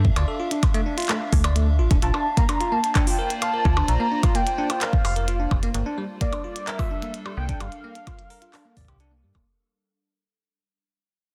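A dense, heavily limited IDM excerpt at 129 BPM, intricate and glitchy, where a deep, up-front electronic kick and clicky glitch kit of handclaps, hi-hat and percussion blips play alongside a metallic FM bass with tube saturation, while a bell-like tine electric piano arpeggiates through dub echo over a warbling, nostalgic tape-like pad, and a velvety synth lead with portamento and tape echo carries the melody from 2.0 s as the chords move from Dm to Bb to Gm7 before a fade-out from 4.5 s.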